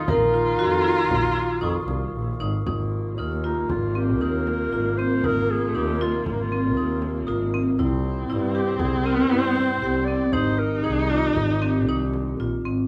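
This playful, hopeful piece of contemporary chamber music in 5/4 at 117 BPM, in Ab major, is cut from a longer work. It opens with a clear, classical-style solo clarinet carrying the melody over a warm viola second line, bowed with vibrato and expressive portamento. A mellow woodwind section holds sustained chords in the background, while a glockenspiel with hard plastic mallets adds a dark, smooth, bell-like shimmer high above. A moment later, a bright, percussive marimba played with hard mallets joins with arpeggios, and a bowed double bass sits close and up front on the bass line, earthy and biting with an airy bow and light vibrato. A dry, acoustic frame drum keeps the percussion in the background. The harmony moves from Bbsus4 to Ab69 at 2.7 s, then through C7 to Fm9/Ab, and the glockenspiel stops at 8.0 s, all set in a wet studio ambience heard from further back in the room.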